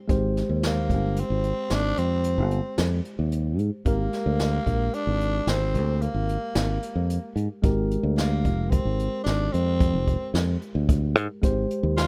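A rough home demo mix with studio reverb opens this short cut from a longer progressive instrumental, a driving, bright piece in 7/4 at 111 BPM with a straight feel. A clean tine electric piano, heard through a combo amp, starts at 0.0 seconds with accompanying chords moving from Abmaj7 to Gm/Ab and back to Abmaj7. Fingered electric bass and a jazz brush drum kit join almost at once, the bass up front with a growly, punchy, direct tone, while the acoustic kit sits in a natural studio room with a boomy kick, medium-tuned snare and hi-hat played with brushes. At 0.7 seconds a growling tenor saxophone takes the solo melody in a pop style, its breathy, raspy and gritty voice carrying a light vibrato and a present, forward edge. The bass and drums give the odd meter a firm push beneath the electric piano's softer chordal bed, with the saxophone riding on top.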